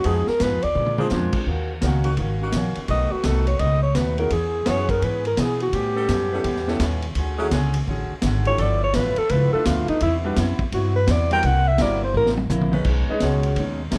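Energetic and joyful big band swing in which a dark, up-front alto saxophone with vibrato and scooped notes solos until 12.9 seconds over a mellow background saxophone section, fingerpicked jumbo acoustic guitar with finger squeak, woody pizzicato upright bass and a vintage drum kit with dark cymbals and a high-tuned snare, before a clear concert grand piano takes a brief solo at the close of this excerpt.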